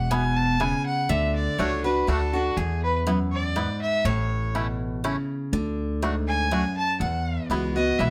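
A clear, lightly vibratoed bowed fiddle carries the melody from the first instant, over a full-bodied, up-front picked dreadnought guitar and the woody, thumpy pizzicato of a gut-strung upright bass. A twangy, percussive fingerpicked banjo joins the melody at 0.1 seconds as this rustic, virtuosic bluegrass passage moves in triple metre through D, E, A and D to a closing Eadd9. Light reverb gives the acoustic band a sense of shared space in this short section cut from a longer piece.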